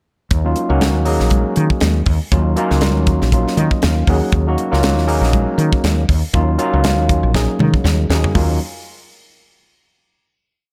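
A woody fretless bass, a tight funk drum kit and congas start together at 0.3 s in this short, funky and driving piece of electric jazz fusion, set in 4/4 with a light sixteenth-note swing. The dark, round bass sits up front with a syncopated riff. The dry, polished kit pairs a high-tuned snare with a tight kick in a funk groove. The thick-skinned congas stay in the background, compressed and saturated under hard hands. An overdriven tine electric piano, barky and gritty through a combo amp with a lush chorus, adds syncopated rootless chord stabs up front and plays a fill partway through, while the drums take a fill just before the groove gives way to a final chord at 8.4 s. A small room ambience surrounds the band.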